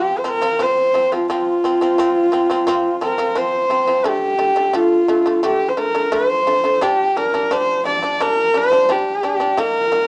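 Mongolian folk music with a vast, galloping mood, moving at 87 BPM in a straight 4/4 in the F zhi mode, cut from a longer piece. A single horsehead fiddle carries the melody up front, its husky, nasal bowed tone colored by light vibrato and portamento, while a bright, buzzing plectrum-plucked shamisen plays percussive arpeggios lower down. The pair sit in a small, wet room with the character of a home cassette recording, over chords moving F5, D5, G5 and Eb5.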